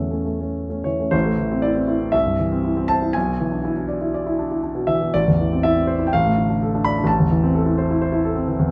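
A concert grand piano, heard up front with a deep bass and short sustain, carries this lyrical romantic character piece on its own, its range spanning A1 to B5. Set in A minor at 121 BPM in 4/4, the playing moves with rubato and uneven beats, settling from 1.1 seconds into a passage that moves through Am, C, E7/B and Dm/A before resting on Am at 7.1 seconds. Moderate studio reverb gives the warm tone a modest sense of room in this brief excerpt from a longer piece.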